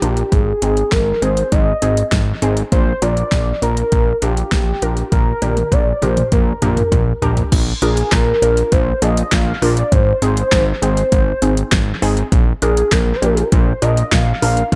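A deep house drum kit sits up front in this upbeat, nostalgic synth-pop excerpt: its deep kick, fat snare, metallic hats, handclaps, toms and crash have a layered, tape-tinged character and an analog delay, with a drum fill from 5.1 to 7.5 seconds. Beneath it, a thick, saturated analog bass built from detuned sawtooth waves holds low between Ab1 and Bb1, its sustained tone shaped by a filter sweep. A warbly, dusty pluck with a lo-fi, vintage quality and a noise layer supplies short-decaying accompaniment, coloured by chorus and phaser. Over the top, a velvety, smooth synth lead with unison, wave-folding and vibrato carries the melody between G4 and F5, treated with chorus and analog delay. At a straight 100 BPM in 4/4 and Bb mixolydian, the chords move through Ab, Bb and Gm/Bb, and the echo-heavy mix sits in light reverb and digital ambience.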